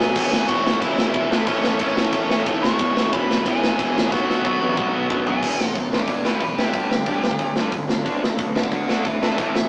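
Punk rock at a rowdy, rebellious 182 BPM, cut from a longer piece. A big, punchy acoustic drum kit sits up front with bright cymbals, while two distorted guitars, a double-tracked crunchy overdriven guitar that drops out at 5.4 s, and a growly fuzz bass churn riffs underneath a nasal lead guitar with a parked wah. After a drum fill at 4.1 s, that lead takes a solo from 5.4 s over chords moving from E through G5 to D5, all in a rough rehearsal-room sound with tube saturation, light reverb and a small-speaker character.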